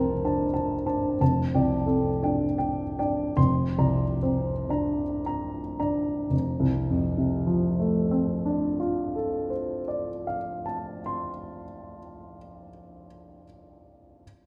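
In a rubato 3/4 that drifts between 26 and 49 BPM and slows over the first 6.3 seconds, this dreamy, serene fragment of impressionist classical solo piano in F major, tuned to A4 = 439 Hz, places a smooth, vintage-toned grand piano up front, spanning F1 to C6 through sus2, add9 and sixth-chord colours before settling on F6, all bathed in a long church reverb with a faint mains hum beneath.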